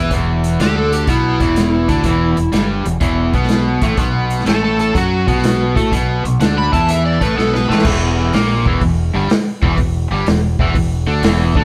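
Smoky and heavy, this blues rock and southern rock power trio swings its eighth notes at 124 BPM in 4/4, in E minor. An overdriven slide guitar, played with fingerpicks, carries a warm melody ranging from E4 to B5 until 7.8 seconds. Beneath it, a crunchy, double-tracked electric guitar sits up front with a bright riff spanning E2 to A4, while a growling fingered bass, overdriven and heard both direct and amped, anchors the low end. A vintage acoustic kit with a punchy kick, medium-tuned snare, dark cymbals and a rolled-off top plays crash, hi-hat, kick and snare, and a drum fill at 7.4 seconds leads into the next section. The band plays live together in a stone room with moderate reverb as the chords move from Em to B5 and back to Em, in a passage cut from a longer piece.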